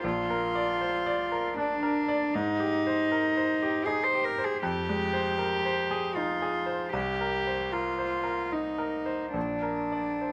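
A single bowed cello carries the second line of this melancholic, longing neoclassical piece, played sul tasto with a pure, floating tone and a smooth top, sitting up front in the mix from D4 to C5. Beneath it, a bright concert grand piano provides the accompaniment, its brilliant, open sound reaching down into a deep bass with a short sustain. The music moves in a rubato 3/4 at around 78 BPM, tuned to A4 = 441 Hz, and the harmony travels from Bb through Abmaj7, Fm7 and Cm7 before returning to Bb at 9.4 seconds. Both instruments play throughout the roughly 10-second fragment, which is cut from a longer piece. Close, detailed microphones and a light reverb give the recording an intimate, present quality.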